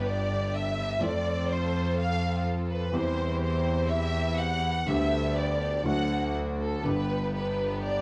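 Tango in G major at 124 BPM, played with a passionate, tense rubato feel in this short cut from a longer piece. A lush, expressive violin section plays a second line from 0.1 s, bowed with vibrato and sitting up front, while an earthy solo bowed double bass and an intimate concert grand piano, with its deep bass and audible action noise, move through G, F, C/E, G/D and D back to G. A nasal string section adds stabs in the background, and light small-room reverb gives the whole a studio feel.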